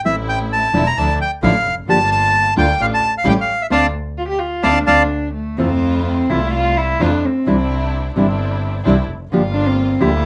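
Sultry and dramatic, this tango excerpt moves at a rubato 130 BPM in D minor before turning to F major at 5.6 s, with a reedy, bright bandoneon singing the melody up front until 5.0 s over fingerpicked, full-bodied nylon-string guitar, a biting, earthy bowed double bass and distant, expressive chamber string stabs, while a sul tasto cello with a floating, pure tone, entering at 4.2 s, goes on to take a solo from 5.6 s, all set in a moderate club reverb.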